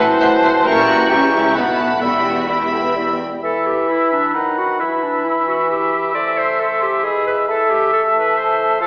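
Heard through a wet, churchy hall reverb with an AM-radio colour, this urgent, dramatic excerpt from a quick classical-period symphonic movement in E minor moves in a rubato 3/4 at 134 BPM. Bowed violins carry a smooth vibrato melody over a second violin line, a distant viola section, a rich cello section and a soft-attacked double bass section, while the soft-malleted timpani adds a round stroke at 2.0 s. After the strings stop at about 3.2 s, the woodwinds continue: a bright clarinet, a pure, hollow flute, a smooth-topped oboe and a mellow bassoon, all over dark, roomy French horn chords that hold to 8.9 s.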